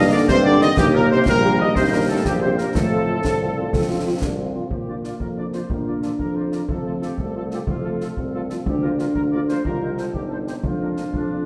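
Heard from further back in a reverberant recital hall, this festive, proud military-style march for wind band in 6/8 at 122 BPM in Bb major is carried by a dark, smooth trumpet section on the melody, while a clear, vintage-toned tuba anchors the bass, a shadowy euphonium and a mellow woodwind section add background lines, a warm French horn section fills in accompaniment, a pure, bright flute group with vibrato sounds only until 4.2 seconds, a close-miked, tight trombone section holds chords until 4.6 seconds, and a dry concert snare drum, bass drum and dusky clash cymbals keep the march pulse.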